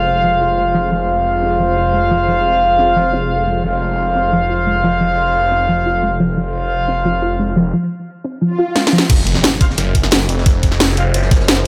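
Soaked in a wet digital room reverb, this mechanical, futuristic slice of dark technical drum and bass opens on a thick, swirling phased saw bass with tube saturation, a deep, moody ambient pad with chorus and sidechain pumping in the background, soft round pluck arpeggios with dub echo, and mellow, distant brass stabs roughened by vintage 12-bit sampler grit. An electronic swell in the background rises from 8.5 seconds under a drum fill, and the drop lands at 9.1 seconds with an impact. There, a knocking electronic kick and a layered kit with a cracking snare and crash sit up front, over a very quiet, gritty breakbeat kit with a high-tuned snare and rolled-off top.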